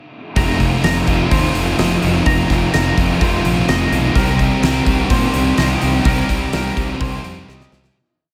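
From 0.4 s, a huge arena drum kit with a fat snare and punchy kick drives this blissful, dreamy shoegaze and dream-pop rock piece at 127 BPM in F mixolydian: a biting overdriven guitar up front, washed in reverse reverb, and a thick fuzz guitar further back strum chords with whammy-bar dips, while a fuzz fingered electric bass pushes steady eighth notes and a twangy clean guitar plays an arpeggiated ostinato through chorus and delay in the background, set in a small room before a fade-out from 6.1 s and a closing drum fill at 7.5 s.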